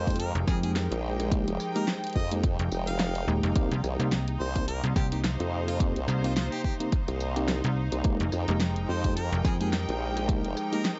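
A swung 107 BPM glitch hop groove in F minor struts along on a punchy, up-front electronic kick and a pop kit with a fat snare, rim clicks, hi-hat and tambourine, while a chorused, tube-saturated formant-sweep wobble bass and a snappy, metallic slap-like FM bass give this gritty, swaggering excerpt its low end. A clear harmonica with light vibrato and scooped notes carries the melody through tape echo, over stabs from a worn, slightly out-of-tune tine electric piano and a bowed texture from a biting symphonic string section, both pumping with sidechain. In the background a warbling, nostalgic tape-like pad with 12-bit sampler grit sustains the Fm11 and Cm7 chords, and the whole dry hardware recording is dusted with vinyl crackle and a dark, rolled-off top.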